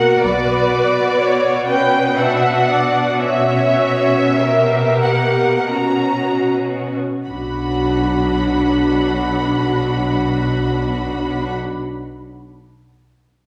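In a rubato 3/4 that slows from the opening through 7.3 seconds, moving between 36 and 65 BPM, this solemn, elegiac excerpt from a slow romantic movement for string orchestra unfolds in B minor. Dark, muted violins carry the melody up front with vibrato, while a second, more distant violin line and softly attacked violas with a smooth top fill the middle over a veiled cello bass. The double basses, lush in tone, touch in briefly near the start and return at 7.3 seconds as the harmony moves from B minor through F#7 over B and back, all heard in a wet recital-hall reverb.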